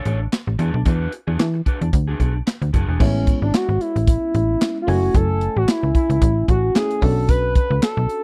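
A swung sixteenth-note groove at 112 BPM in 4/4 drives this slick, funky early-eighties boogie funk excerpt, built on a tight, airy drum kit with kick, snare, hi-hat, handclaps and crash, plus a snappy, metallic FM slap bass, both sitting up front. For the first 3.0 seconds a dark, slightly broken-up electric guitar picks a lo-fi riff with subtle chorus over Bm9 and E9. At 3.0 s the guitar stops as a smooth, mellow sawtooth lead with portamento, vibrato, chorus and slapback echo takes the melody, backed by a glassy, bell-like FM electric piano with chorus through Amaj7, F#m7 and Bm9, all in a close, dry 1970s-style studio sound with little reverb.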